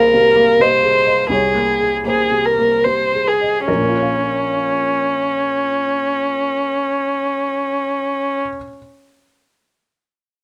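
Neoclassical piano and strings in Bb minor, this brief, reflective and longing fragment moves in a rubato 3/4 at 71-89 BPM, slowing down over its opening 3.7 seconds as an Abadd9/C chord gives way to Bb minor. A muted violin, dark and veiled, played con sordino by one bowed player with vibrato, carries the melody close and up front over a soft, mellow felt-muted upright piano whose intimate accompaniment sits lower in the mix with audible action noise. The rough home demo mix places both in a small room with moderate reverb.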